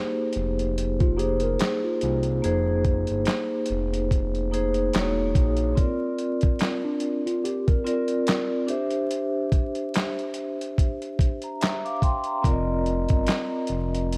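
Vinyl crackle hangs over this hazy, melancholic lo-fi hip hop excerpt at 72 BPM in F dorian, where a ringing soft-mallet vibraphone with slow motor vibrato and cassette-tape filtering carries the chords and takes a fill at 11.2 s, a gritty, thumpy sampler-style drum kit of kick, snare, hi-hat and handclaps sits up front with a swung 16th-note feel, a saturated sawtooth synth bass with a moving notch plays until 5.7 s and returns at 12.4 s, and a clean tine electric piano with tape echo hovers in the background.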